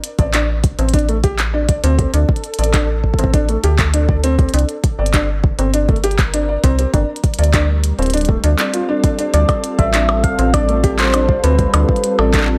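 A clicky, glitchy drum kit of handclaps, hi-hat and percussion blips opens this eerie IDM excerpt, joined almost at once by a deep electronic kick, both set in a small room ambience. Alongside them, a felt-muted upright piano plays soft, intimate arpeggios through tape echo, its action noise audible, while a metallic FM bass with tube saturation sits up front in the low register. At 2.0 seconds a glassy FM pad enters with slow-attack sustained chords, its ensemble chorus and built-in reverb lending an ethereal haze. The harmony moves from D5 through Csus2 and Gsus2 to Dm7. At 9.3 seconds a round, gentle synth lead arrives with the melody, its keys-like tone carrying chorus, vibrato and tape echo. The overall mix is close and dry, with little reverb.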